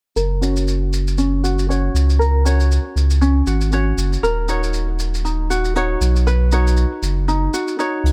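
A deep, round sine sub bass with a fast attack and sustained notes sits up front in this playful, warm folktronica excerpt at 118 BPM in F# major, a filter sweep running through it. A light, fingerpicked ukulele plays arpeggios through a low-pass filter, tape echo and its own filter sweep, while a distant, roomy shaker and hi-hat played with brushes sit far back with a rolled-off top. The swung 16ths move from F# to D#m7 at 4.2 s and Badd9 at 6.3 s, inside a small room ambience.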